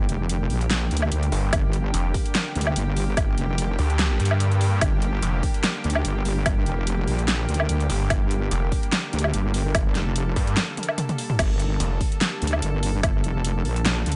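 Set in a digital ambience with a muted top end, this chaotic, heavy wobble dubstep excerpt at 146 BPM in G minor moves with a swung half-time feel: a saturated, detuned wobble bass and an up-front dubstep drum kit with a huge snare and metallic hats run throughout, a punchy, tape-warm electronic kick adds weight, a growling, distorted saw bass with a moving notch snarls in two bursts beginning at 1.3 and 7.9 seconds, a lush, airy chorused pad pumps beneath it all, and a drum fill arrives at 10.8 seconds.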